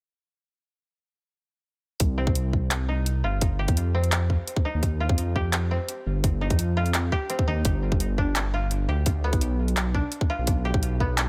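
At 2.0 seconds a heavy, cinematic half-time drum and bass groove arrives at 170 BPM in 4/4, built on a deep, rumbling detuned saw bass and a tight, overdriven electronic kick, both sitting up front. A layered electronic kit adds handclaps and bright hi-hats, also pushed forward and roughened by overdrive. From 2.2 seconds a mellow koto, played with fingerpicks, traces woody arpeggios in C harmonic minor, softened by a low-pass filter and trailed by tape echo. The bass holds sustained, beating unison tones beneath the harmony as it moves from C minor to G at 7.7 seconds. The mix stays close with little reverb, giving this fragment of a longer piece a heavy, confined weight.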